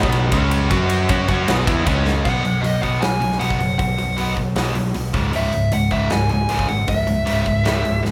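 Hard rock at 156 BPM in a straight 4/4, aggressive and menacing, played live in one room with light reverb. A cranked stack guitar and a high-gain distorted guitar in the background churn out the riff over growly picked bass and a punchy, up-front acoustic kit with bright cymbals, while a double-tracked, compressed overdriven guitar adds weight until 2.3 seconds. After a drum fill at 2.1 seconds, a dark, smooth lead guitar steps forward at 2.2 seconds with a high overdriven melody, the harmony settling on C#m at 5.1 seconds.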